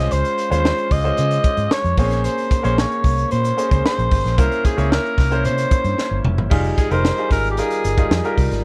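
Polished 1980s jazz-funk pop in F minor at 113 BPM, this short cut from a longer piece feels nocturnal and slick. A growling alto saxophone carries the melody up front, its raspy, breathy tone laced with vibrato and a slapback echo. Beneath it, a clear baby grand piano accompanies with long sustain and a lush chorus, while a vintage fingered electric bass sits dark, round and punchy with a foam-muted thump. A crisp fusion drum kit joins at 0.1 seconds with bright cymbals, a high-tuned snare and a tight kick, its small pumping room giving a saturated, up-front edge. The harmony moves from Dbmaj7 through Bbm9 and C7b9, and a drum fill at 6.0 seconds leads into a new section that lands on Fm9, all in a dry, close sound.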